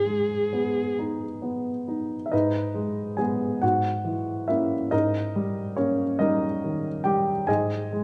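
Pulsing slowly in 6/8 at 46 BPM with a free, rubato feel, this melancholic and solemn romantic duo in G# minor opens with a dark, bowed viola sounding G#4 with vibrato and portamento for the first 0.9 seconds. Sounding from the very start, the warm, intimate baby grand piano carries the accompaniment from G#2 to G#5, its action noise audible up close, and continues alone through 8.0 seconds over G#m, A#dim/G#, D#/G# and a closing G#5. Close, detailed microphones keep both instruments up front within a wet recital hall reverb of 1.7 seconds, in a passage cut from a longer piece.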